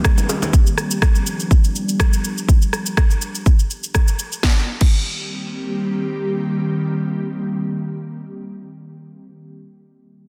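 Hypnotic and driving, this short afro house excerpt moves at 123 BPM in 4/4 with a light swing on the sixteenths, set in C minor. An ethereal, airy pad holds sustained chords from start to finish at 8.8 seconds, its detuned sawtooth and triangle tones softened by ensemble chorus and built-in reverb, pumping against the kick, with a filter sweep running through its first 2.5 seconds. A punchy, up-front electronic kick anchors the groove until 5.0 seconds, alongside a layered house kit of crash, rim click, shaker and a cracking, softly clipped snare. Brief touches of hand percussion appear in the opening half-second: very quiet, ringing congas and tight, high-tuned bongos struck with hard hands. The harmony moves from Cm7 to G7 and returns to Cm7 at 4.4 seconds, where the drums soon fall away and the pad carries on, all within a dense, heavily limited modern master with light reverb.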